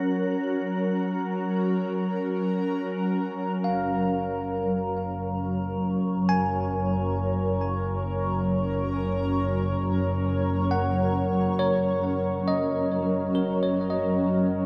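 Warm and luminous, this slow 68 BPM ambient piece in F# major opens on a shimmering, ethereal pad with octave-up shimmer, chorus and phaser over a soft, organ-like drone that ends at 3.7 seconds, and at 3.6 seconds, as the harmony moves from F# to F#maj7, a bell-like tine electric piano begins clean tape-echoed arpeggios above a focused, bowed double bass section holding a low F# with vibrato, all set in a vast cathedral reverb.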